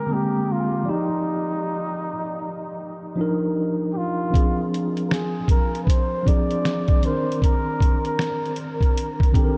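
Soaked in a huge ambient reverb with cassette tape colouring and lossy compression artefacts, this hazy, melancholic lo-fi hip hop piece moves at 78 BPM with a swung 16th-note feel, setting a breathy, close-miked jazz flugelhorn melody with vibrato and scooped notes over an up-front, mellow tine electric piano heard as if through built-in speakers, both softened by a low-pass filter across Bb9, Ebmaj9, Dm7b5 and Cm9, until a muffled, pitched-down sampler-style drum kit with vintage 12-bit grit, finger snaps, hi-hat, a thumpy kick and a medium-tuned snare enters at 4.3 s.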